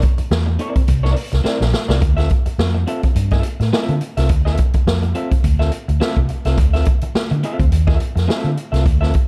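A dark, small-room sound frames this short, playful funk excerpt, cut from a longer piece and riding a light sixteenth-note swing. Up front, an acoustic drum kit with a boomy kick, medium-tuned snare and hi-hat sits beside a round, punchy, foam-muted electric bass, while a picked, compressed electric guitar on the edge of break-up sits lower in the mix. The harmony moves from C9 to Dm9 at 2.0 seconds, set up by a drum fill from 1.5 seconds.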